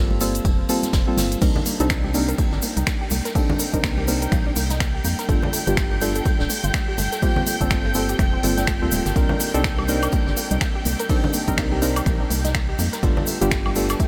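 A swung 124 BPM deep house groove in 4/4 rides a punchy electronic kick, a deep house kit of smooth hats, finger snaps, woodblock and crash, a brushed jazz kit tucked in the background, soft-handed congas and a grainy egg shaker. Set in C dorian, this late-night excerpt from a longer piece circles Gm11, Cm9 and G9 over a hollow, organ-like FM bass and up-front chord stabs that are soft, dark and deep, colored by chorus, cassette-tape grit, tape echo and sidechain pumping. From 1.4 seconds a warbling, lo-fi pluck arpeggiates with tape echo and a silky analog string pad sustains on high, the whole dreamy mix soaked in a huge ambient reverb.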